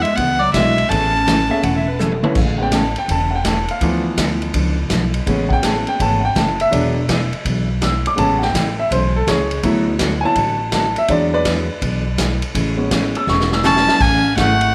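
Heard through a moderate echo-chamber reverb, this playful, cheerful excerpt of swinging western-swing country opens with a nasal, up-front fiddle melody over a raspy, growling clarinet second line and a brief dark, slide-played lap steel guitar, then gives way to a clear, intimate upright piano solo from 2.4 to 14.0 seconds, backed throughout by woody pizzicato upright bass, a bright picked steel-string acoustic guitar in the background and a distant, roomy big-band drum kit with a punchy kick, before fiddle and clarinet return at 13.6 seconds.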